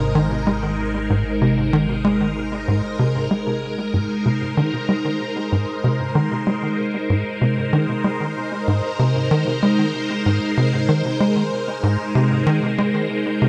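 A straight 4/4 pulse at 95 BPM drives this expansive, luminous slice of ambient, sequencer-driven space music in Ab major, where a tight, punchy sequencer bass riff with a nasal filter pluck and tape echo runs under swirling, bright string-machine chords treated with ensemble chorus and phaser, while a mellow, warbling analog drone holds a low Ab1 until 3.3 s, all set in a moderate plate reverb.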